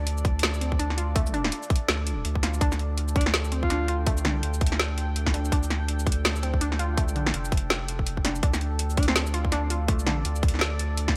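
A deep, moody pad with vintage sampler grit and sidechain pumping opens alongside a warbling, lo-fi pluck arpeggio with tape echo and a thick, saturated sub bass, soon joined by an up-front electronic kit of tight kick, woody snare, metallic hats and shaker in a dark, spacious half-time drum and bass groove at 165 BPM in D minor with 59% swing, while a very quiet, mellow alto saxophone with light vibrato appears briefly at 3.2 seconds and again at 9.0 seconds in this cut from a longer piece.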